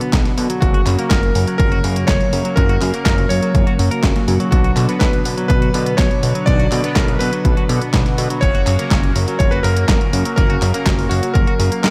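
Italo disco at 123 BPM in 4/4 with a straight feel, this short cut from a longer piece in B harmonic minor feels nostalgic and danceable, moving between Bm and F# chords. An overdriven, punchy electronic kick drum sits high in the mix alongside a detuned 8-bit digital drum machine supplying handclaps, hi-hat and a medium-tuned snare with a tape-warm, sampler-style character and studio reverb. A glossy chorused synth bass, built from pulse and sawtooth waves with ring modulation, a filter sweep and tube saturation, anchors the low end from 0.1 seconds. In the background, a thick, detuned unison pad holds sustained chords with a slow attack and long release, a mellow chorused polysynth adds stabs, and a twangy, clean direct-recorded electric guitar plays arpeggios through tape echo. From 0.6 seconds a clear electric grand piano carries the melody with clangy bass tones, vintage 12-bit sampler grit and its own tape echo, all set in a digital ambience.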